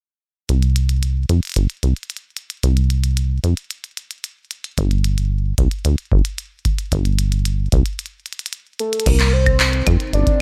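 A rubbery, saturated acid bass opens at 0.5 s with a resonant filter pluck, sitting up front beside a glitchy drum kit of clicky hi-hats, claves, handclaps and crash cymbal, in a cerebral, dry IDM excerpt in C minor at 112 BPM. A deep analog kick joins at 4.8 s. During a break, together with a drum fill, a detuned, warbling lead with a nostalgic cassette-tape tint, chorus, vibrato and tape echo arrives at 8.8 s, and a smooth analog pad then holds a Cm9 chord in the background.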